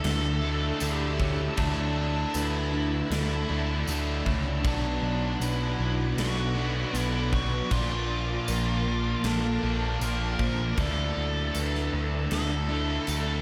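A straight 4/4 pulse comes from a polished, gated 80s drum kit with bright cymbals and a tight kick, joined at 0.8 s by a jingly tambourine in the background, while an up-front growling picked bass with overdrive anchors this blissful, dreamy shoegaze and dream pop passage cut from a longer piece. A wall of riffing guitars fills the middle: a dark thick fuzz guitar with distortion and lush chorus, a crunchy overdriven guitar with reverse reverb, and a very quiet double-tracked overdriven guitar, while a lo-fi, slightly broken-up guitar through a small old amp plays chorused arpeggios with diffuse ambient delay. Above a silky, warbling string machine holding sustained chords through Dsus2, Bm and Bbmaj7, a nasal lead guitar with a parked wah sings the melody through overdrive and ambient delay, all soaked in a lush hall reverb.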